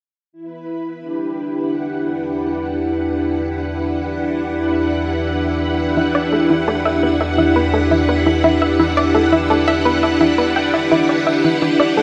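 Bathed in a wet scoring-stage reverb, this expansive, cosmic excerpt of sequencer-driven ambient space music at 85 BPM in E minor opens at 0.3 s on lush, up-front string machine chords over Em7 with ensemble chorus and a filter sweep, adds a fading-in, warbling analog drone bass with pulse-width modulation at 2.3 s, and brings in a round, chorused analog pluck riff with tape echo at 6.0 s.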